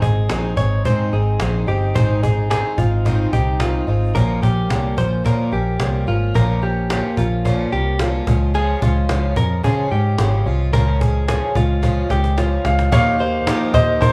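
A band playing live in one room fills a large studio with moderate reverb, giving this breezy, nostalgic slice of jangly indie pop an open, natural sound. At 109 BPM in a straight 4/4, a fingerpicked twelve-string acoustic guitar shimmers with octave-doubled, boxy strings and audible finger squeak, while a clean, direct-recorded electric guitar picks compressed arpeggios above it. A vintage muted electric bass sits up front, dark, round and punchy with its foam-muted tone, and a woody, band-limited cajon with faint snares keeps the pulse. The harmony moves from Ab to Bbm at 4.2 seconds, and a drum fill at 11.8 seconds leads into a new section on Ebadd9. A clear upright piano enters with an intimate melody at 12.6 seconds, woody in tone with its action noise audible, carrying the brief passage to where this cut from a longer piece ends.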